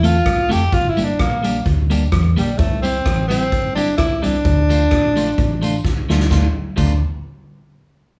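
Driving, energetic ska in D minor at 129 BPM with a light swing, this short cut features a clear, up-front tenor saxophone melody with light vibrato over a clean, compressed picked electric guitar, a dark, round hollow-body fingered bass, a punchy swinging big-band drum kit that plays a fill at 5.8 s, and a jingly tambourine with slapback echo sitting in the background, all in a live-room studio ambience as the chords move through Am, Gm, C and Dm.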